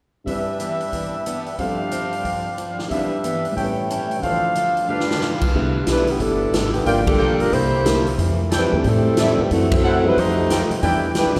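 A swinging, brassy big band swing excerpt cut from a longer piece opens with a dark, mellow grand piano and a bright, boxy picked acoustic guitar in the background, clear trumpet-section stabs and a distant, roomy drum kit with a punchy kick, all carried by a wet church reverb. A drum fill at 4.9 seconds leads into a new section where a woody, thumpy pizzicato upright bass joins at 5.5 seconds and a tight, up-front saxophone section with light vibrato takes the melody from 5.9 seconds. Band accents land at 7.0 and 9.7 seconds over rich extended harmony.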